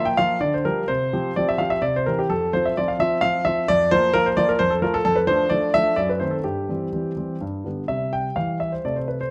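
A playful, cheerful classical-period piano sonatina in 3/4 at 129 BPM, this short cut from a longer piece features a clear, polished grand piano playing solo up front with audible action noise and long sustain, moving from F major into C major at 5.1 seconds in an intimate, detailed sound set in moderate recital hall reverb.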